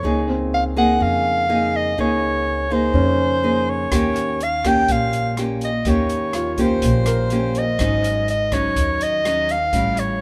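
Bossa nova with an intimate, wistful mood, taken from a longer piece and moving in a straight four at 124 BPM. A mellow soprano saxophone carries the melody up front, its subtone voice softened by light vibrato, gentle attacks and scooped notes in a smooth jazz style. Beside it, a bright, fingerpicked nylon-string guitar with fresh strings provides close accompaniment, while a woody pizzicato upright bass anchors the low end. A grand piano sits in the background, natural and intimate, its action noise faintly audible. At 3.9 seconds an open jazz drum kit joins with hi-hat, a boomy kick and rim clicks, its dark, rolled-off top sounding as if played in a small room, all within a light reverb over chords moving from Bbm11/Db to Eb7 and Ab7sus4.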